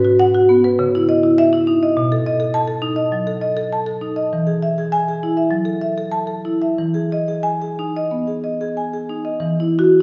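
Flowing and playful, this short passage, cut from a longer contemporary classical piece, features a solo marimba played with medium hard mallets. The instrument's airy, warm tone sits up front and spans from its low register up to its upper notes across the full 10 seconds. The metre is a steady four, yet the phrasing breathes with a rubato feel, so the pulse stretches and gives. Its harmony drifts from G#m7 through C#madd9 and B7 before settling on E at 4.3 seconds, then passes through F#m7 and Emaj7 to close on Esus2 at 9.4 seconds. A generous recital hall reverb surrounds the sound, with the listener placed further back in the room.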